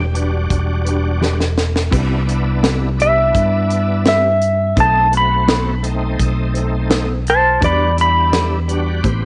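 A clean lap steel guitar carries the melody up front in this brooding, soulful straight-eighth soul blues, its dark, compressed slide tone shaped by volume swells. Beneath it, a bright tonewheel organ fills in chords with a full, shouting voice, lightly overdriven and colored by chorus vibrato, key click and a slow rotary speaker. A fingered electric bass sits up front with a growly, amped sound, while a tight funk drum kit adds a natural small-room feel, with a high-tuned snare and a tight kick, plus hi-hat and crash cymbal, and a drum fill from 1.2 to 1.9 seconds. A mellow electric guitar adds tremolo-tinged stabs in the background. The harmony moves from Em7 to Cmaj7 and a tense B7b9 before returning to Em7, all within a short passage cut from a longer piece, set in light reverb with a soft top end.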